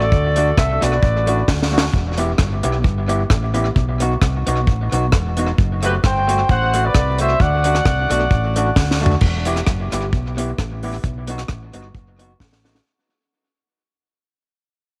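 A brisk 132 BPM ska groove in 4/4, with a light swing on the eighths, drives this energetic, mischievous clip in E minor. Up front, a deep reggae drum kit has a dry, high-tuned snare, a tight kick, rim clicks, hi-hat, toms and crash cymbal, with tape echo and drum fills marking the turns. Alongside it, a fingered electric bass sounds dark, round and punchy, while an electric guitar through a small old amp plays picked, slightly broken-up, compressed accompaniment with its own tape echo. A warm horn section with a smooth top carries the melody in ensemble phrases, first in the opening moments and again from 5.8 seconds, over chords moving through D, Em, B and F#dim. Light reverb, a small-room ambience and vinyl crackle frame the sound, and the music fades out from 9.2 seconds as a new section begins.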